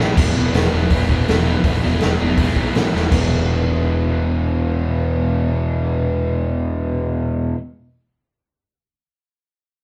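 A straight 4/4 pulse at 163 BPM drives this urgent, angry punk rock fragment, in which a punchy, up-front raw garage drum kit opens with a fill and cuts out at 3.2 s. Beneath it, a growly fuzz bass holds down the low end while two picked electric guitars, one crunchy and overdriven, the other bright, distorted and compressed, play riffs that shift from E minor to E major at 3.1 s, captured as a band playing live in one room with moderate reverb.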